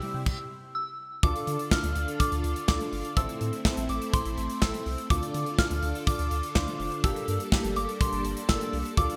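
Synth-pop in D minor at 124 BPM, this driving, nocturnal excerpt pairs a soft, pure FM bell melody, coloured by chorus and phaser, with a clear concert grand piano and a shimmering, vintage string machine holding sustained violin chords, both touched with ensemble chorus. Beneath them, a punchy, polished studio drum kit up front with gated reverb and a round, dark analog bass entering at 0.1 s drive the progression from C to Dm, Am and Gmadd9. The bright 1980s-style digital production sits in light small-room reverb.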